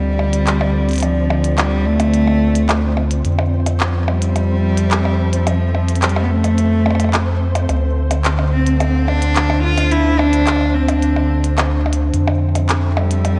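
Steeped in a moderate, lush hall reverb, this dark, intricate, glitchy IDM excerpt moves at 108 BPM in D minor, drifting between Dm7 and Fmaj7. An intimate, up-front cello carries the melody with light vibrato, an airy sul tasto bow and a touch of delay, floating over a warbling, nostalgic tape-like pad, a round, deep analog bass and a grainy, flickering granular texture in the background. At 0.2 seconds a glitchy electronic drum kit joins with clicky hi-hats, handclaps and percussion blips.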